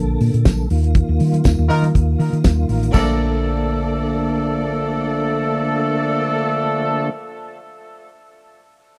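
A damped 1970s drum kit leads this joyful, danceable disco excerpt at 120 BPM in Bb major, its fat snare, tight kick and bright cymbals sitting up front from 0.2 s until about 3.1 s, with soft, very quiet congas and a jingly tambourine tucked in behind. A mellow tonewheel organ holds sustained chords throughout, its round, lightly overdriven tone colored by chorus vibrato and a slow rotary speaker. Beneath it, a hollow-body short-scale fingered electric bass gives a dark, punchy low end. From 0.9 s to 2.9 s the band hits an accent together, and a horn section enters within it at 1.7 s with tight stabs in octave doubling, its pop-style attack colored by tape echo and a distant, roomy placement. At 2.9 s, as the harmony returns from Ebsus2 to Bbmaj7, a lush, biting symphonic string section adds a bowed second line with vibrato. The whole takes place in a small, dry room with a close 1970s studio sound.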